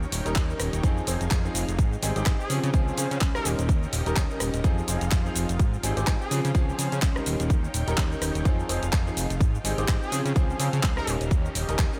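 A punchy electronic kick pounds at 126 BPM from 0.4 seconds, sitting up front over a swung sixteenth-note house groove of handclaps, hi-hat, rim click and shaker whose hats and percussion pump with sidechain compression. This groovy, funky slice of filtered disco house, cut from a longer piece, cycles through Eb7, Fm7, Abmaj7 and Dbmaj7. A fat, saturated, detuned analog sawtooth bass with a filter sweep pumps underneath. A bright concert grand piano plays accompaniment through a phaser and gritty 12-bit sampler texture, pumping with the sidechain. A lush vintage string machine holds slow-blooming chords in the background with ensemble chorus. A very quiet, clear horn section with vibrato adds melodic lines from 2.4 seconds and again at 10.0 seconds, all in a light reverb.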